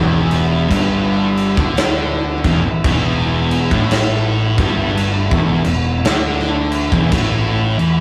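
Stoner and doom metal with an ominous, sludgy weight: this short passage, cut from a longer piece, rests on a single chord with a swung, dragging feel. Two thick fuzz guitars pick the low riff from the first moment. One is dark and sits in the background, while the other is distorted and pushed up front. A growly, overdriven fuzz bass holds down the low end from underneath. At 0.3 seconds, a big acoustic rock kit arrives up front, with a punchy kick, a medium-tuned snare and crashing cymbals ringing in a natural, roomy space, while a very quiet drone of sawtooth and sine tones slowly fades in, its resonant overtones shifting under chorus and its own reverb. The whole thing has the rough, saturated sound of a rehearsal room, with a moderate small-room ambience.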